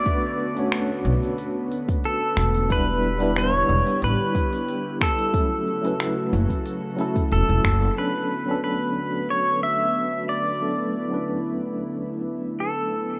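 A bright, twangy pedal steel guitar carries the wistful melody with tape echo and fingerpicked slide swells in this relaxed sunset chillout excerpt in B minor at 91 BPM, over a worn, slightly out-of-tune tine electric piano with medium tremolo, a breathy, chorused pad holding mellow chords, a deep electronic kick and smooth deep house hats, snaps and shaker in a small room, and a woody pizzicato upright bass that enters at 1.0 s, before a band accent at 7.6 s and the rhythm section dropping out near 7.9 s, leaving the steel, piano and pad to drift on in a rough home demo mix bathed in plate reverb.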